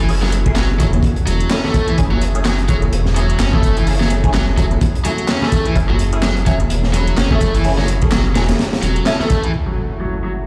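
Funky and energetic, this breakbeat cut moves at 127 BPM in 4/4 with a 57% swing on the 16ths, resting on an F#m7 chord in F# minor, and is taken from a longer piece. Up front, a crunchy breakbeat kit with a high-tuned snare, tight kick and hi-hat sounds saturated and gritty with a rolled-off top, while a dark detuned saw bass rumbles deep and beating in the low register. An overdriven, compressed electric guitar plays a picked riff through a low-pass filter and dub echo, and a nasal, band-passed chord stab sits in the background with phaser, ensemble chorus and dub echo. Further back, an electronic garage kit adds tape-warm handclaps and metallic, filtered hats, ringing congas sound distant and very quiet, and a swirling, evolving analog pad holds bright, phased chords. The groove drops away around 9.5 seconds, when an electronic impact hits up front until 10.5 seconds, all heard with light reverb and small room ambience as if played on a big sound system in a bare room with a large studio reverb.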